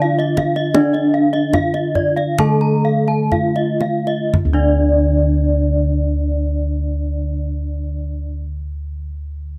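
Ringing bronze metallophones and round, beating bossed gongs open this hypnotic, shimmering Balinese gamelan excerpt from a longer piece, with a mellow padded-mallet melody over a lower accompaniment line and two higher arpeggio parts, several tuned in pairs that throw off shimmering beats, while deep, hard-handed kendang drumming joins at 0.2 s and stops at 4.8 s as the pulse slows through the first 4.3 s, heard in a dry, close 1970s-style studio sound.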